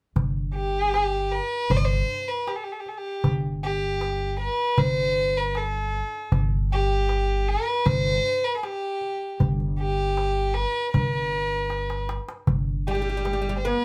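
Festive and warm, this excerpt of an Arabic maqam ensemble moves at 78 BPM in a straight 4/4, tuned to A4 = 441 Hz. A single bowed violin carries the melody with a rich, pure, floating tone and soft attack, sitting distant yet up front, over pizzicato upright bass with a thumpy, woody steel-string low end and an acoustic darbuka of clay shell and natural skin in a small room. The darbuka plays a fill from 11.7 to 12.5 seconds. At 12.9 seconds a fretless, double-strung oud enters with a plectrum-plucked second line just before the close, and light reverb frames the ensemble.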